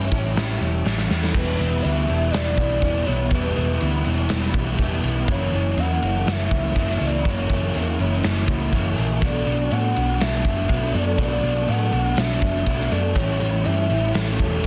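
A straight 4/4 pulse at 122 BPM drives this dreamy, wistful piece of shoegaze-leaning dream pop rock, cut from a longer piece. A gated 80s drum kit enters at 0.1 seconds, up front with a punchy kick, medium-tuned snare, hi-hat and bright crash cymbal ringing in an airy stone room, and a fill at 0.9 seconds leads into the main section at 1.4 seconds. A hollow-body short-scale electric bass gives a round, dark low end, while a crunchy overdriven guitar plays a prominent riff colored by analog chorus, joined very quietly by a clean, compressed, direct-recorded electric guitar riff. A fingerpicked twelve-string acoustic adds shimmering, octave-doubled arpeggios low in the blend, and a pure, breathy sine lead with vibrato, a sub octave and a noise layer carries the melody through chorus and slapback echo. The chords move from A7 through Em7, F#7 and Bm7 before returning to A7, and the dense, heavily limited master keeps the sound dry and close.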